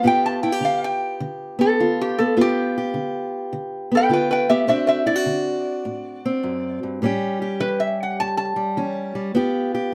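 Rollicking yet laid-back, this short cut from a longer acoustic country blues piece moves at 103 BPM in 4/4 with a swung eighth-note feel. A metal-body resonator guitar carries the melody, played with a steel bar and fingerpicks, its metallic, nasal tone sitting up front with a slapback echo as it ranges from G4 to A5. Beneath it, a fingerpicked steel-string parlour guitar supplies the accompaniment from D2 to G4, boxy in character, with audible finger squeak. Both guitars play throughout, the slide part stopping at 9.5 seconds just before the accompaniment finishes at 9.9. The harmony moves from G7 to D7 at 4.7 seconds, then A7, and returns to G7, all heard in a moderate small room.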